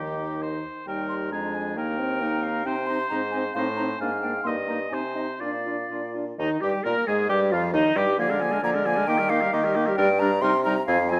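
A quick, graceful and spirited classical-period movement for wind quintet in Eb major opens with all five players together at 134 BPM in 2/4, phrased with a rubato feel: a pure, hollow concert flute carries the melody with vibrato and a crisp attack, a warm oboe sings a second line, and a clear clarinet and a soft-attacked French horn with a vintage tone fill the accompaniment above a bassoon bass that sits up front. The oboe and bassoon carry light vibrato, as does the horn, while the oboe, clarinet and bassoon sound distant and roomy. A moderate recital hall reverb surrounds the ensemble, and the music moves into a new section at 6.4 seconds before this excerpt breaks off at 11.2 seconds.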